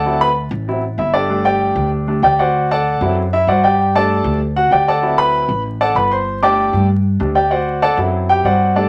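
A vinyl crackle sits over a studio reverb that lends the room a wet sheen, and both instruments sound up front. This brief salsa cut, lifted from a longer piece, feels sunny and danceable, with a brisk, straight pulse in four. A clear, natural-sounding grand piano carries the accompaniment and takes a solo across the whole 8.9 seconds, ranging from F#3 to D6. Beneath it, an acoustic upright bass played pizzicato on gut strings gives a woody, dark, thumpy low end between G1 and G2. The harmony keeps swinging back and forth between D7 and Gsus2, giving the groove a bright, open-ended lift.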